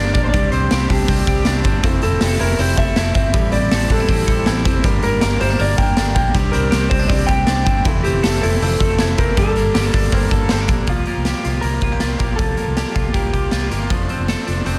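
Wistful and bittersweet, this short cut from a longer jangly indie pop piece moves at 159 BPM in a straight 4/4, its chords drifting from Csus2 through Fmaj7, Am7 and Gm before settling on C7sus4 at 10.9 seconds and closing on F6. A dark, slightly broken-up electric guitar through a small old amp carries the picked melody with a lo-fi edge, dressed in plate reverb and delay, and falls silent at 13.7 seconds. Beneath it, a twangy, compressed twelve-string electric guitar spins bright, clean arpeggios, while a crunchy overdriven guitar sits in the background with its own plate reverb. A woody, slightly detuned upright piano adds very quiet support until 10.9 seconds, and a round, foam-muted fingered bass anchors the low end with an amped, vintage tone. Up front, a raw garage drum kit of kick, snare and hi-hat sounds saturated and gritty, with a punchy kick, a pumping stone-room ambience and a rolled-off top, all sealed in a dense, heavily limited modern master.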